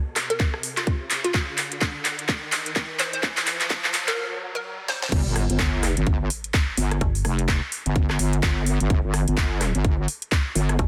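A riser and sub drop open this bouncy, swaggering bass house cut in G minor at 127 BPM with a swung 16th-note feel, as a tight, up-front electronic kick and a house kit of cracking snare, metallic hats, crash, handclaps and rim clicks drive a build-up topped by a hollow, detuned square-wave pluck melody with chorus and digital delay, until the drop at 5.1 seconds brings in a heavy, saturated wobble bass with sidechain pumping, punctuated by brief stabs of a metallic, decaying FM bass at 7.0 and 10.8 seconds, all under a dense, heavily limited master with light reverb.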